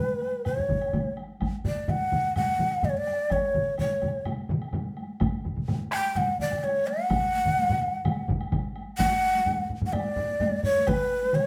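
A breathy, hollow end-blown bamboo shakuhachi sits up front with vibrato, chiff and a crisp attack, carrying the melody over a powerful, driving Japanese traditional taiko drum ensemble in straight 4/4. Three taiko groups struck with heavy and hard sticks, heard from distant to close, join a dry, close solo taiko and a woody woodblock far in the background, all played live in one room with wet studio reverb, in this cut from a longer piece that moves into a new section at 9.0 s.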